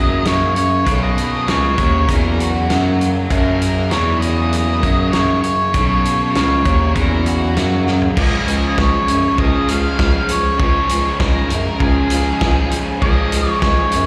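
A mellow bass clarinet sits up front, carrying the low line beneath a carefree, wistful indie rock passage cut from a longer piece. A dark, fuzzy octave-fuzz lead guitar sings the melody with slapback and tape echo, while two bright, overdriven garage guitars pick out riffs, one tucked in the background and the other shimmering with lush chorus. The loose acoustic drum kit joins at 0.3 seconds with a fat snare, tight kick and gritty, rolled-off top, and its fill at 7.9 seconds tips the music into a new section at 8.2 seconds, all heard as a live gig through the venue's PA with recital hall reverb.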